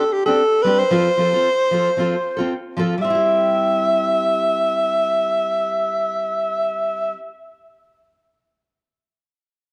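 A warm, vibrato-laced alto saxophone sings a pop-style solo melody up front, while a dark, full-bodied picked steel-string acoustic guitar accompanies from the start, with finger squeak audible on the strings. This joyful, danceable highlife moves in a gently swung 4/4, drifting from Csus2 to F before settling on C as a new section opens at 3.0 seconds. A wet spring reverb and small-room ambience surround the pair; the saxophone drops out at 7.1 seconds, just before the guitar at 7.3 seconds, in this fragment cut from a longer piece.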